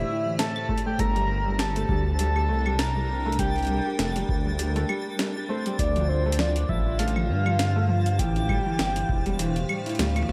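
A warbling, nostalgic lead melody opens this glitchy, cerebral IDM fragment at 100 BPM in G dorian with a light 16th-note swing, over icy, crystalline pad chords with sampler grit, a soft felt-muted upright piano arpeggiating with audible action noise and dub echo, and a dark, detuned sawtooth bass rumbling up front, before a pitched-up, gritty jungle-style sampled kit of claves, hi-hat, snare and toms enters at 0.4 seconds, an overdriven deep electronic kick joins at 0.7 seconds, and a faint twinkling granular shimmer appears in the background at 1.8 seconds, all in an echo-heavy digital ambience that closes on a drum fill.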